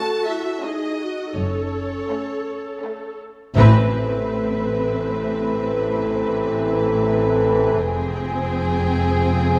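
Cinematic suspense film score at 84 BPM in 3/4 and A minor, mysterious and tense, where a rich, vibrato-laden violin section carries the melody over a smooth second violin line, expressive viola with soft attacks and portamento, and mellow French horn chords, joined at 1.4 seconds by lush cello and woody double bass sections on the bass, and at 3.6 seconds by distant, roomy trombones and a brief accent from hard-mallet timpani, the whole set in a wet scoring-stage reverb in this excerpt cut from a longer piece.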